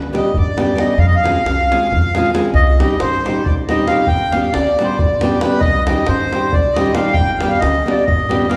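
An up-front, reedy accordion with a slow beating shimmer carries the fiery, virtuosic melody in this brief cut from a longer Balkan wedding-band tune, set in a straight 7/8 at 272 BPM in eighths. Beneath it, a small, fingerpicked nylon-string guitar comps warmly, a dark, woody pizzicato upright bass anchors the low end, and a tight, band-limited davul gives the groove a vintage edge. The band sounds heard from further back in a wet recital hall, and the harmony shifts from G and Fm into a passage that alternates Cm and G from 2.5 seconds on.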